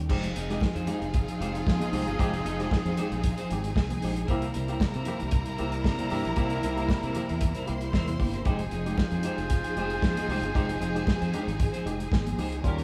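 Muffled, up-front soul drums with dark cymbals and a tight kick drive this danceable, glamorous disco groove in F minor at 115 BPM, where punchy fingered bass, a worn, lightly overdriven tine electric piano, lush bowed studio strings, a rich symphonic violin line, a dark picked clean guitar, very quiet ringing congas and warm horn stabs entering at 1.1 seconds move from Fm7 to C7 and back inside a large live room.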